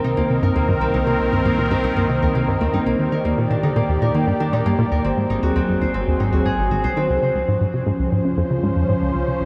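A huge ambient reverb with a long tail wraps this short cut from a longer piece of sequencer-driven space music, and the top end stays soft, rolled off above 10.8 kHz. The mood is mysterious and expansive, moving in a straight, steady 4/4. Up front, a punchy, funky analog bass plucks a riff from detuned sawtooth, pulse and sine tones, its fast attack and decaying filter pluck thickened by ensemble chorus and tape echo. A bright, ringing Celtic harp fingerpicks arpeggios, also up front and carried on tape echo, while an airy, evolving pad with a noise layer and chorus sustains chords on a slow filter swell. Beneath it all from 0.1 s, a very quiet analog drone hums with a nasal, pulse-width-modulated tone and a moving notch. The harmony passes through Cm7, Ebmaj7 and Ab7 before settling onto Dbmaj7 at 7.1 s for a new section.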